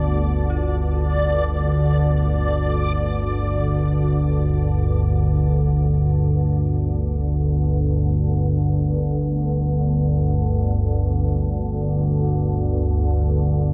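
An up-front, organ-like drone of detuned sine tones, thickened with ensemble chorus, sustains low through this cavernous, desolate dark ambient piece in free time, cut from a longer work and opening on a G5 chord. For the first 2.3 seconds a bright, reversed granular texture swells dreamily above it. From 0.5 seconds a very quiet, eerie FM bell adds inharmonic, warbling arpeggios with a mellow, vintage tone, all set in a huge, wet reverb with a dark production.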